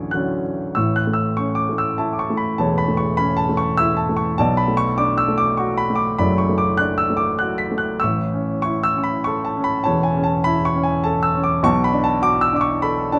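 Classical solo piano in A major, relaxed and sunny, moves at 99 BPM in a rubato 3/4 across this 13.2-second passage cut from a longer piece, where a polished, present grand piano sits up front, spans E1 to B6, and drifts from Dmaj7 through A and Bm7 chords under close, detailed microphones with light reverb.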